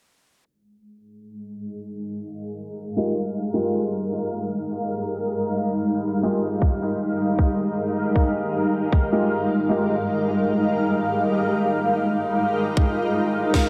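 A cloudy, detuned granular pad with analog chorus sits up front in this meditative, spacious ambient dub excerpt in F minor at 78 BPM, holding a sustained Fm11 chord under a filter sweep. A dark, woody upright piano adds stabs through a low-pass filter and dub echo from 3.0 s, and a tight, overdriven electronic kick punches in at 6.6 s, drops out at 9.7 s, then returns. Near the close, a bubbling, resonant sawtooth texture drifts in the background and a brushed snare appears, all within a dreamy mix soaked in lush hall reverb.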